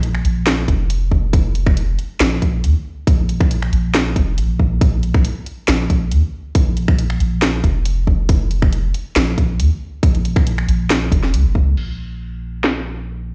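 A half-time 4/4 groove at 138 BPM sets the pace for this cavernous, meditative deep dubstep passage in Bb minor, cut from a longer piece and tuned to A4 = 438 Hz. A deep, round sub bass with a mellow, sustained tone sits up front from the start alongside an overdriven garage kit of cracking snare, finger snaps, filtered hi-hat and crash cymbal, while a tight, layered electronic kick enters at 0.7 seconds. The sound carries the stony reverb of a big sound system in a bare room, and the bass holds on alone after the drums drop out at 12.7 seconds.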